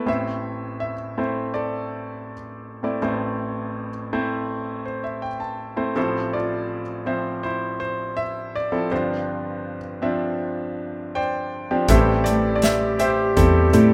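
This reflective, melancholic acoustic folk-pop ballad opens with a bright grand piano alone, carrying the melody in a brilliant, intimate, up-front tone where the action noise of the instrument is audible. The piano drifts through A minor, Fmaj7/A and G7sus4 chords, adding a short fill at 4.5 seconds. At 11.9 seconds the full band arrives for a new section on an Am7 chord. A clear clarinet plays a jazz-style second line with light vibrato and scooped notes, while a fingerpicked Celtic harp rings out warm arpeggios in the background. Beneath them, a vintage fingered electric bass sounds dark, round and foam-muted through an amp, and a natural country drum kit with a small-room feel adds hi-hat, a punchy kick and a medium-tuned snare. A moderate large-studio reverb gives the ensemble space, and the passage is cut from a longer piece.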